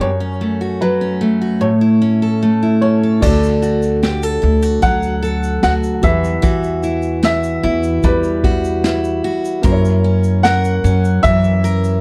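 A full-bodied, up-front picked steel-string acoustic guitar carries this heartfelt, easy-going acoustic pop piece in D major at 75 BPM, joined from 0.0 seconds by a woody, boxy upright piano melody touched with tape echo. At 3.2 seconds the band enters: a thumpy gut-string upright bass played pizzicato, a vintage brush kit with a punchy kick, medium-tuned snare, shaker and crash in a small room, and a soft felt-muted upright piano sitting in the background with audible action noise. The production is dark and warm with little reverb, moving through F#m, A, D, Emadd9 and F#7 in this fragment of a longer piece.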